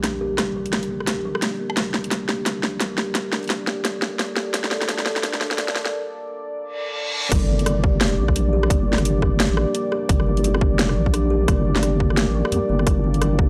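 A half-time drum and bass groove at 173 BPM in 4/4 carries a swung sixteenth feel in G minor, and this tense, dark excerpt sits on a single G minor chord. It opens as a build-up, with the overdriven drum kit up front playing a fill of cracking snare, bright hats, rim clicks and crash while filter sweeps move over a deep, moody analog pad of detuned sawtooth and triangle tones that pumps under sidechain and chorus. A woody, hollow kalimba plucks arpeggios through gritty 12-bit sampler texture, a low-pass filter and tape echo, ringing in a boxy small room alongside a deep, soft wobble bass of square and sine waves, detuned, compressed and thickened by chorus and tube saturation. A break arrives at 5.9 seconds, a reverse cymbal rises in the background from 6.7 seconds, and at 7.3 seconds the drop lands with an electronic impact as a tight, overdriven electronic kick enters up front. The dry, gritty hardware sound is high-pass filtered and touched by light digital reverb.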